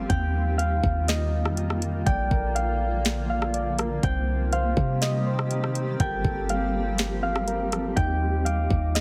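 A deep, boomy 808-style bass sits up front with a fast attack and mellow sine-like decay, anchoring this dreamy, floating slice of atmospheric cloud-rap at 122 BPM in a half-time 4/4 feel. A smooth, electronic R&B kit arrives at 0.1 seconds with a knocking kick, sharp snare, rim clicks and metallic hats, while a granular cloud pad holds blurred, detuned chords that pump against the beat and bloom through their own reverb. High above, a concert harp carries the melody in a ringing, fingerpicked acoustic tone, softened by a low-pass filter and trailed by delay, and from the very start a very quiet vibraphone struck with hard mallets adds a dark, smooth texture with slow motor vibrato. At 2.1 seconds, soft electric-piano-like synth keys enter with round, warbling vintage arpeggios coloured by chorus, filtering and delay. The harmony drifts through Ebadd9, Bbmaj7, Cm7, Gm11 and Ebmaj9 in a lightly reverberant space with a heavily compressed, radio-like finish.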